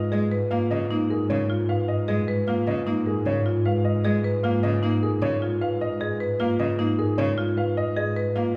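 A dark, worn baby grand piano carries the melody from the opening moment over a lush, bowed double bass section holding a low G#2. This brief excerpt of a minimalist classical pattern piece moves at 153 BPM in 5/4 with a meditative yet urgent mood. A single bowed cello with smooth vibrato supplies the accompaniment while an up-front marimba with medium hard mallets spins vintage-toned arpeggios over one G#m69 chord in G# dorian, and the players sit back in a wet recital hall whose 1.7-second reverb frames the piano's audible action noise.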